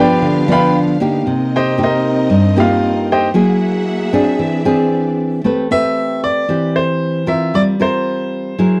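A clear baby grand piano carries the melody up front in this intimate, wistful bossa nova excerpt, its natural tone ringing with long sustain and a touch of audible action noise. Beside it, a fingerpicked nylon-string guitar supplies the accompaniment throughout, its fresh strings giving a classical, acoustic sound that sits just as close. During the piano's solo passage, a warm, lush symphonic string section holds bowed chords with vibrato; its focused ensemble tone and smooth top rest well behind the other two parts, and it drops out at 5.4 seconds as the music moves into its second section. The harmony drifts through colorful chords such as G7, Cm7 and Gb9 before settling onto Am9 and Gm7. A dry, close 1970s-style studio sound with moderate ambience lends the performance a personal feel.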